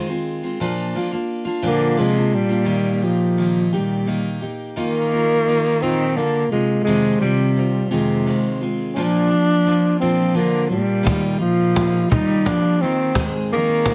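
A slow, lilting 6/8 at 57 BPM carries this nostalgic acoustic folk excerpt in Eb major, opening with a bright, full-bodied picked steel-string guitar before a mellow alto saxophone takes the classical-style melody with vibrato at 1.6 seconds, joined at 1.7 seconds by a cello playing a soft-attack, sul tasto second line with an airy bow. A woody cajon with faint snares enters at 11.1 seconds as the chords move from Ebadd9 to Ab, and the close, detailed recording sits in light reverb with the saxophone most prominent.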